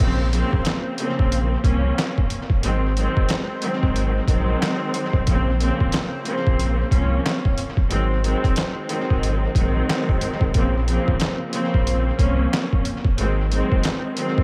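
A moody, reflective boom-bap hip-hop groove opens at once with a sampler-style drum kit, a deep sub bass and a lush bowed string section all sounding together from the start. The drums are gritty, compressed and pitched down, with a thumpy kick, a medium-tuned snare, hi-hat, handclaps and crash cymbal, carrying a tape-warm character, a tape echo and a swung sixteenth-note feel. Underneath, the round, sine-like sub bass holds sustained notes with a fast attack. The string ensemble plays focused, vibrato-rich chords that sit up front yet feel distant, filtered and coloured by cassette tape and tape echo. The harmony alternates between Bbmadd9 and Ab7 throughout this short section cut from a longer piece, and the whole mix is bathed in an echo-heavy digital ambience.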